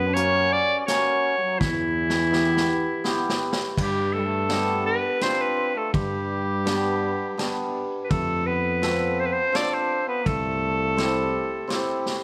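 Set in a moderate recital-hall reverb, this festive yet bittersweet klezmer number in 3/4 puts a bright, vintage-toned clarinet up front on the melody, with a buzzy, thin trombone in a metal mute carrying a vibrato-laced second line beneath it. A mellow, distant tuba holds the bass, a shimmering hammered dulcimer rings out the accompaniment, and a street-band drum kit with a boomy kick and rolled-off top plays a fill from 1.6 s to 3.8 s. At 3.8 s the music moves into a new section, and the tuba drops out at 11.6 s shortly before this fragment of a longer piece ends.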